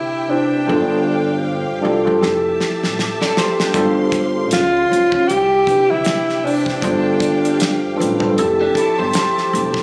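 Late-night and soulful, this short cut from a longer R&B and neo-soul piece moves at an unhurried 78 BPM in 4/4 with a swung sixteenth-note feel, its chords drifting from Cmaj7 through G7sus4 and Fmaj9, with a brief turn to C#maj7. Up front, a breathy tenor saxophone carries the melody in a jazz style, its subtone, vibrato and scooped notes giving it a smooth top until it drops out at 8.0 seconds. Beside it, a worn, slightly out-of-tune tine electric piano plays clean, direct accompaniment through an analog chorus, while a lush bowed string section holds rich, close chords further back with its own vibrato. A woody, bright pizzicato upright bass joins at 0.7 seconds, and a damped 70s drum kit, dry with a fat snare and tight kick, enters at 2.2 seconds with a drum fill. A picked, compressed electric guitar at the edge of break-up adds a short second line in two brief passages, also colored by analog chorus. 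The sound has the light reverb and studio ambience of a room caught on a phone, with noticeable compression.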